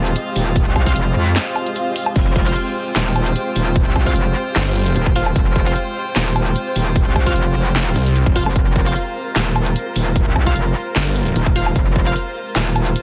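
Heavy wobble dubstep with an aggressive, menacing mood, driven in a half-time feel with a light swing on the sixteenths over a minor-key chord that anchors the whole passage, cut from a longer piece. A metallic, distorted wobble bass sits up front from the start, its bright chorus-laden tone bolstered by overdrive. Behind it, huge, lush supersaw chords and a bright, earthy chamber string section sustain in the background, both pumping under sidechain, with the chords shaped by a low-pass filter. A punchy, tape-tinged electronic kick drives things from 0.6 seconds alongside a big-room dance kit of punchy snare, handclaps, hi-hat, crash cymbal and woodblock, while bold, layered orchestra-hit-like synth stabs with a noise layer and filter sweep punch through built-in reverb and digital delay. A brief break around 1.4 seconds brings a background electronic swell, and a growling, detuned saw bass snarls in for short bursts, first at 4.6 seconds, in a dense, heavily limited modern mix set in a digital ambience.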